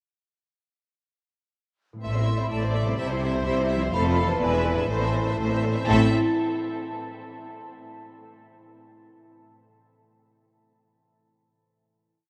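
Bathed in the wash of a vast, echoing cathedral space, this short, playful film cue opens with a ringing, thumb-plucked concert harp rolling chords in the background at 1.9 s. At 2.0 s the full string body enters: a rich violin section carries the melody in a rocking two-note figure, a distant second violin section traces a counter-melody, a clear, close viola section shares the rocking figure, and cellos mark the bass on the beats while smooth double basses double them beneath. A mellow flute section with rolled-off highs floats a tongued, vibrato-laden line on top, giving the mischievous, magical miniature its whimsy before everything settles onto a final chord at 5.9 s.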